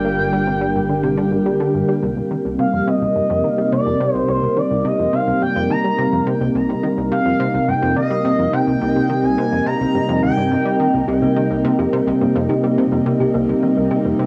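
This is ambient, sequencer-driven space music in C minor at 106 BPM in a straight 4/4, with an expansive, cosmic mood, cut from a longer piece. A lush, thick unison pad sits up front holding sustained chords throughout, its detuned sawtooth and square layers warbling with chorus, cassette tape and plate reverb, while a punchy, funky analog bass plays a riff with a fast, decaying filter pluck and a touch of ring modulation. For the first 2.0 seconds a nasal, evolving analog drone on G1 hums in the background under a Gm7 chord before the harmony settles on Cm7. Up front, a smooth, expressive synth lead carries the melody until 11.0 seconds, its mellow sawtooth-and-triangle tone shaped with vibrato and trailed by delay and plate reverb. At 11.1 seconds a round, tine-like thumb-piano-style FM pluck takes over with gentle, dark arpeggios tucked in the background. The whole has the hazy character of a home recording on cassette, set in a wet studio reverb.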